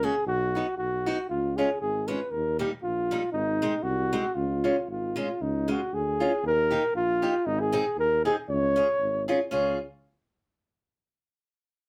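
From the first moment, a breathy flugelhorn carries the melody over a picked old ladder-braced acoustic guitar and a mellow tuba in this jolly, bouncy alpine dance band number, cut from a longer piece. It moves at 117 BPM in 2/4 with a light swing on the eighth notes, set in Db major. The flugelhorn sits up front and close-miked, its dark, whispered tone shaped by vibrato, soft attacks and scooped notes in an intimate, jazz-style solo. The boxy guitar, also up front, gives audible finger squeaks, while the tuba sounds distant and roomy, with light vibrato in a classical-style bass line. Heard as a band playing live in one small room with moderate reverb, the tune shifts into a new section at 5.4 s and reaches its last brief passage at 9.5 s, all three parts playing until 9.8 s.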